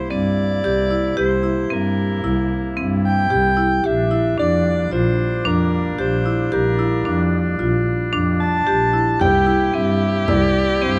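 Close, detailed microphones and light reverb frame this pensive, restless excerpt of contemporary chamber music in 5/4, where a punchy, jazz-style soprano saxophone with light vibrato carries the melody over soft-attack sustained chords from a woodwind section, bright hard-mallet marimba arpeggios and a bowed double bass, until a focused bowed viola adds a second line and a deep frame drum sounds in the background from 9.2 seconds.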